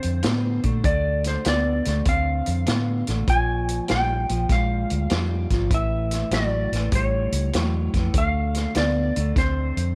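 A loping swung shuffle in four drives this smoky, brooding electric blues fragment, cut from a longer piece, with a vintage acoustic drum kit up front: punchy kick, medium-tuned snare and hi-hat, with a rolled-off top end in a studio room. A vintage fingered electric bass, foam-muted, round and dark, sits up front underneath. An electric guitar, picked through a small old amp, plays a compressed, slightly broken-up riff in its low-to-middle register. Above them a clean lap steel guitar carries the slide melody, fingered and sitting in a narrow upper range. All four parts play together throughout, moving from Dm7 to a Bb7 lacking its third at 3.3 seconds and A7 at 5.7 seconds before returning to Dm7 at 8.1 seconds, all bathed in studio reverb.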